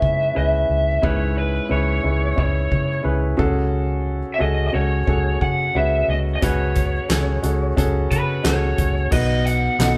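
An overdriven lead guitar through a small cranked amp carries the melody up front in this dramatic, bittersweet piano-driven pop excerpt at 89 BPM, its picked, lo-fi tone sitting over a warm, intimate concert grand piano whose action noise and deep bass give the accompaniment a close, natural presence. A dark, round, foam-muted electric bass sits punchy and forward beneath them, while a natural country drum kit adds a fat snare, punchy kick, hi-hat, crash cymbal and handclaps. The band plays live in a moderate stone room, with the harmony moving from C#m7 to F#madd9/C# at 3.4 seconds and arriving on B at 9.1 seconds, all touched by lossy compression artefacts.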